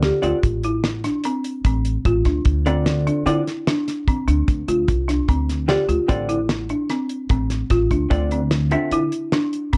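Driving and brooding, this short excerpt is progressive instrumental band music in D minor, moving at 148 BPM in an uneven 7/4 with a straight feel and resting on a single Dm7 chord. A damped 70s drum kit of hi-hat, kick and snare sits up front with a fat snare, tight kick and rolled-off top, its sound dry and smooth. The pizzicato upright bass, woody and dark with steel strings, anchors the low end from A1 to D3. A folk marimba with medium hard mallets plays arpeggios between C4 and G4, its hardwood bars giving a rustic tone touched by plate reverb. A clean, compressed vintage hollow-body jazz guitar, picked and electric, supplies accompaniment with a dark tone and plate reverb of its own, dropping out at 9.0 s while the other parts carry on to 9.8 s. The whole band is close and present in a moderate studio ambience.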